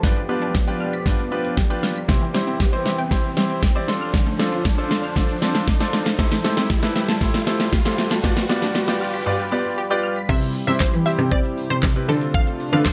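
A straight 4/4 pulse at 117 BPM drives this carefree, summery dance-pop excerpt in C major, with an up-front electronic kit of knocking kick, fat snare, crisp hats, handclaps, shaker and crash playing a fill through the build-up. A brilliant grand piano, a smooth detuned analog pad with chorus and a phased, delayed pluck arpeggio all pump against the kick, while a background riser builds and a jingly tambourine joins at 2.6 seconds. At the drop at 10.3 seconds, a lush sawtooth unison pluck takes the melody with delay, and a biting, bowed cello with vibrato carries the bass, sounding distant under light reverb.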